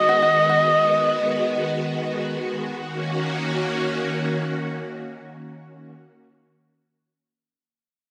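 Melancholic and cool, this short pop excerpt in Eb minor drifts in free time, as a smooth, expressive sawtooth portamento lead with vibrato, chorus and digital delay sings a brief melody up front until 2.2 seconds over vintage, soft-attack string machine violas shimmering with phaser and ensemble chorus until 5.9 seconds, while a very quiet, plunky fingerpicked open-back banjo adds a fleeting arpeggio near the start, all set in a bright 1980s-style digital production with a wet plate reverb, moving from a B6/D# chord to Ebm7 at 2.8 seconds.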